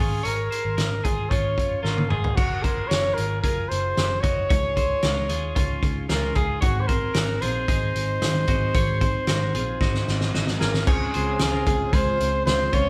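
Recorded as a band playing live in one large studio room with moderate reverb, this breezy, bright slice of jangly indie pop sets a clear, punchy, close-miked flugelhorn melody up front over twangy, compressed twelve-string electric guitar arpeggios and a dark, round, foam-muted picked bass. A loose, saturated drum kit with a fat snare and punchy kick joins at 0.2 seconds, and after a drum fill a full-bodied picked steel-string acoustic guitar with audible finger squeak enters in the background at 2.4 seconds. Following a second drum fill, very quiet detuned sawtooth analog keys with a filter sweep and a shimmering vintage string machine with sustained violin chords arrive at 10.9 seconds as the harmony settles on Dbmaj7.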